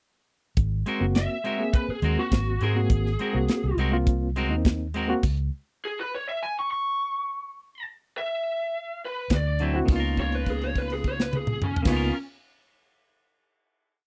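A straight-eighth soul blues groove at 103 BPM starts at 0.6 seconds with a tight funk drum kit and a round, foam-muted fingered bass riff, joined moments later by twangy clean guitar chop stabs and a barky, reedy electric piano with fast tremolo. These rhythm parts drop out for a stop from 5.2 to 9.3 seconds while the overdriven lead guitar through a small cranked amp, lo-fi with slapback echo, keeps playing its soulful, laid-back lick-based theme before the band returns for a held note over a closing Db13 chord in a dry, close studio sound.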